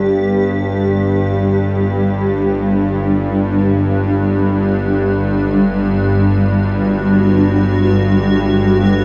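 Dark and cavernous, this dark ambient drone drifts in free time as a fragment cut from a longer piece, resting on a single G5 chord from start to finish. A tense, string-like bowed drone with detuned sawtooth unison, a noise layer and vibrato sits low and up front. Above it, a bright, blurred granular cloud pad holds evolving sustained chords, both parts fading in slowly and lingering inside a huge, wet reverb with an 8.7-second tail.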